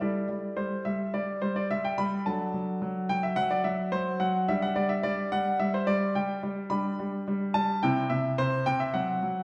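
A classical-period piano sonatina in G major, cheerful and playful, moves at 108 BPM in 4/4 with a rubato feel that lets the phrasing breathe. A clear baby grand piano plays alone throughout the short 9.4-second fragment, cut from a longer piece, ranging from C3 up to B5. Its tone is polished and present, sitting up front even as the listener seems placed further back in a recital hall whose wet reverb, about 1.6 seconds long, blooms around each phrase. The harmony passes through A5/G, D/F# at 2.3 seconds, G5 at 4.5 seconds and settles toward C at 7.8 seconds. The instrument is tuned to A4 = 442 Hz.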